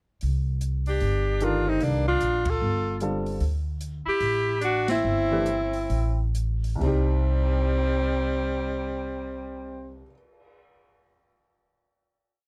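A clear, up-front alto saxophone states a motif-based melody with scooped notes and light vibrato, shadowed by a vintage-toned tenor saxophone mostly in thirds, over a woody two-feel upright bass, syncopated quartal comping from a baby grand piano and a small-room drum kit with dark cymbals and time kept on the hi-hat, in an intense, searching modal jazz piece with band accents at 2.4 and 4.8 seconds, a slowdown from 3.4 seconds and a final chord at 6.8 seconds, all in a dark, dry production.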